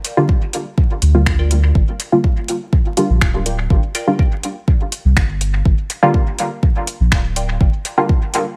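An echo-heavy digital ambience with vinyl crackle frames this hazy, nocturnal dub techno excerpt, where a tape-warm electronic kick and a layered deep house kit of finger snaps and metallic hi-hats sit up front beside a round, soft sub bass entering at 1.0 s, while a muted, detuned sawtooth chord stab with chorus, phaser and dub echo pumps under a filter sweep, and a quieter, nasal stab riff with a moving notch drifts in at 1.4 s over a Gm7 chord.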